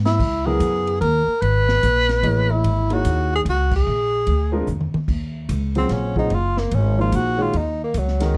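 Dark, lightly reverberant production frames this intense, cool modal jazz excerpt in swung 3/4 at 147 BPM, where a woody, thumpy pizzicato upright bass and a breathy tenor saxophone with scooped notes and vibrato sit up front, an intimate concert grand piano with audible action noise accompanies over C#m11 and A#7, a vintage drum kit with a tight kick and rolled-off top adds fills including one at 4.7 seconds, and a band accent at 3.7 seconds comes before the saxophone solo over Ebm9 in Eb dorian from 5.1 seconds.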